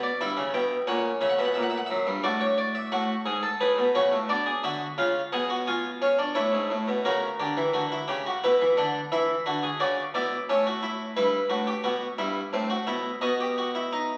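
Baroque-style classical fugue in three voices, elegant and stately in a straight triple metre, heard as a brief cut from a longer piece where a solo Flemish-style harpsichord sits up front with a plucked, brilliant tone doubled by octave strings, its voices ringing through a wet recital-hall reverb and the crackle of a very old 78 rpm record, before turning at 7.0 seconds to a second section that settles in minor from 11.2 seconds.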